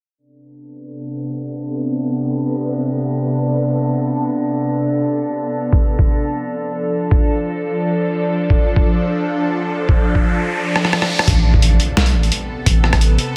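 Heavy and cinematic, this short cut from a longer half-time drum and bass piece floats in free time in A minor, opening on an Amadd9 chord. A bright, tense, string-like bowed drone carries sustained chords up front, its detuned sawtooth tone coloured by phaser, vibrato, reverb, sampler grit and sidechain pumping, while a metallic, eerie inharmonic drone shimmers beneath it with chorus and a mellow edge. A filter sweep runs through the opening section as the harmony moves to D minor, and at 5.7 seconds a thumpy, pitched-down, tape-warm electronic kick enters, sitting up front with a gritty, compressed punch. An electronic riser builds from 9.5 seconds, the kick drops away briefly, and a boom bap sampler-style kit with hi-hat, rim click and a medium-tuned snare plays a fill into the drop. At 11.3 seconds the chord returns to Amadd9 with an impact and a deep, long, sine-like 808-style bass, all set in a moderate echo chamber reverb with a low-pass filter softening the top end.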